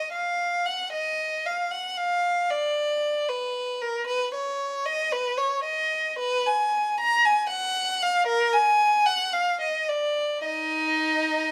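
A single violin sits up front in a lightly reverberant space, its tone rich and focused with a singing vibrato. This is a short excerpt from a baroque-style suite movement for unaccompanied violin, set in Eb minor with the instrument tuned to A4 = 443 Hz. The mood is grave and introspective, and the pulse moves slowly, around 52-59 BPM in 4/4, with a rubato feel that lets each phrase breathe. One bowed player carries the whole passage from start to finish across 11.5 seconds, ranging from Eb4 up to Bb5. The close placement and modest room ambience keep attention on the intimate, searching character of the line.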